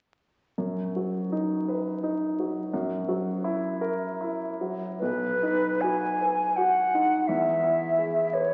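Tender and lyrical, this short passage, cut from a longer piece, is a romantic classical duo for flute and grand piano in B major, moving in a flexible 3/4 with rubato at roughly 71-86 BPM. The grand piano opens alone at 0.6 seconds, playing an up-front, polished accompaniment with a short sustain, ranging from B1 to B4 over harmonies that move from B/F# to F#7. At 5.0 seconds the silver concert flute enters with the melody, its metallic, airy tone mellow and tongued, carrying vibrato and sitting close to the listener between B4 and G#5 as the chords settle on B and then E. The flute sits a little louder than the piano, and both parts continue together until 8.5 seconds. The duo is heard through a very old 78 rpm record, with vinyl crackle and a muffled top end, set in a concert hall with a lingering, wet reverb.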